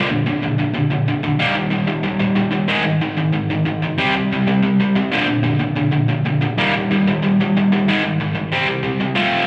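Urgent and angry, this punk fragment is cut from a longer piece and sits in a straight four-four. A lone distorted electric guitar carries it from 0.0 to 9.5 seconds, reaching from Ab2 up to F4. Its tone is bright, picked and compressed, double-tracked and pushed up front, with slapback echo and digital delay trailing the distortion. The guitar moves through Bb, Eb, Ab5 and C5, then cycles through that same sequence again before the clip ends. The sound comes from a live gig heard through the venue's PA, wrapped in club reverb, light reverb and a digital ambience.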